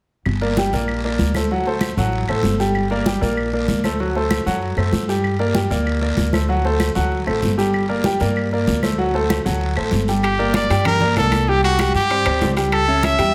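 Fiery and danceable, this salsa excerpt sets an up-front, clear concert grand piano with audible action noise against a thumpy pizzicato upright bass, soft-handed congas, woody claves and a raspy guiro, and at 10.2 seconds a bright, punchy trumpet with vibrato joins them for the solo alongside very quiet ringing timbales, all in a large studio reverb as the chords move from Gm and D7 to Gmadd9, Csus2 and A7/C#.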